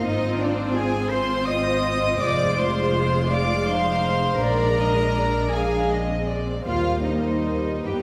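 From the first moment, a slow, melancholic and yearning romantic movement for string orchestra unfolds at 54 BPM in a rubato 6/8, with floating, sul tasto violins carrying the melody over a second violin line, dark, woody violas with vibrato, rich cellos, and pure, soft-attacked double basses up front, all moving through Ab6, Fm, Bb7 and Eb inside a wet scoring-stage reverb that places the ensemble further back in the room, in an 8-second passage cut from a longer piece.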